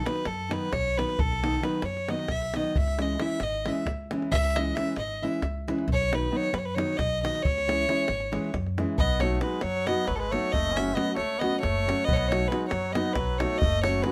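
Set in a straight 7/8, this Balkan wedding-band folk piece moves with a restless, virtuosic drive, and it is cut from a longer performance. A single fiddle carries the melody up front and close, its bowed tone rich, biting and earthy with an airy bow and light vibrato. A small, fingerpicked nylon-string guitar and a woody pizzicato upright bass fill in underneath, while a tight, dry davul keeps the percussion close. The harmony moves between B and C sharp minor before turning toward F sharp minor in the second half. At 9.0 seconds a mellow trumpet enters with a classical-style second line and light vibrato, sitting further back in the mix. Light reverb gives the band a modest sense of space.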